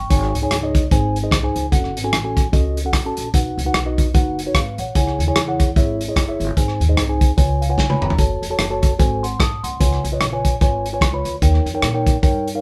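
The sound is that of a band playing live in one studio room, with moderate ambience around the players. This short excerpt of uptempo gospel runs at 148 BPM in 4/4 with a swung eighth-note feel, and its mood is soulful and solemn. A mellow, clean tine electric piano sits up front carrying the accompaniment, moving through chords such as G#sus4, F#m, B, C#m and G#7b9. An acoustic upright bass played pizzicato on steel strings gives a woody low end. The soul drum kit is up front, mid-forward and warm, with a tight kick, a medium-tuned snare, rim clicks, hi-hat, toms and a rolled-off top. The piano breaks into a fill at 7.4 s, and the drums add a brief fill of their own at 7.8 s.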